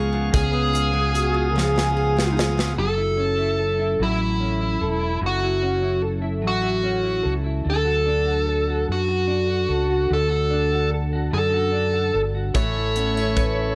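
A swaying, heartfelt pop ballad in 6/8 at a slow 49 BPM, this excerpt opens with a double-tracked, twangy twelve-string electric guitar, a reedy tonewheel organ with subtle chorus, a full-bodied acoustic guitar picking arpeggios in the background and an up-front fretless bass. A tight small-room drum kit and a dark, overdriven lead guitar carrying the melody join at 0.3 seconds, while a mellow French horn section with tape echo adds a second line in the background until a drum fill hands off at 2.8 seconds. From there the lead, twelve-string and bass move through F#m7 and D, until organ, acoustic guitar and drums return around 12.6 seconds on an Aadd9 chord in light room reverb.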